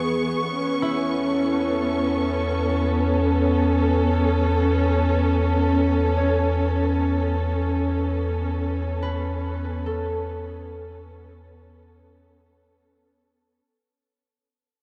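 Floating in free time, this weightless, peaceful ambient fragment is cut from a longer piece and rests on an Aadd9/E chord. A dark, woody string section plays lush bowed sustained chords up front with vibrato and sul tasto tone, over a round, deep analog bass holding E2, while a mellow, fingerpicked concert harp rings out arpeggios in the background through tape echo from 0.8 seconds. A huge ambient reverb and cassette tape character wrap the sound, and a fade-out begins at 4.8 seconds and runs to the close at 13.7.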